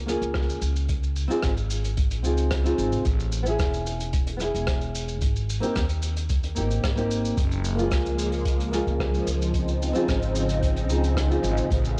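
A fingerpicked nylon-string guitar sits up front in this relaxed, smooth sunset chillout excerpt, its full-bodied classical tone colored by cassette tape and an analog delay as it moves through lush major-seventh and ninth chords like Gbmaj9, Dbmaj9, Amaj7 and Abmaj9. At 111 BPM in a straight 4/4, a woody, thumpy upright bass plays pizzicato on gut strings, dark and close beside an electronic kick drum with a deep, tape-soaked analog thump. A vintage brush kit with hi-hat, rim click and shaker sits further back, mid-forward in a small room with a rolled-off top and a cassette haze. At 7.4 seconds a soft string machine enters with silky, mellow sustained chords, its slow attack and long release shimmering through phaser and ensemble chorus. The whole piece carries the intimate feel of a home cassette recording with light reverb, cut from a longer track.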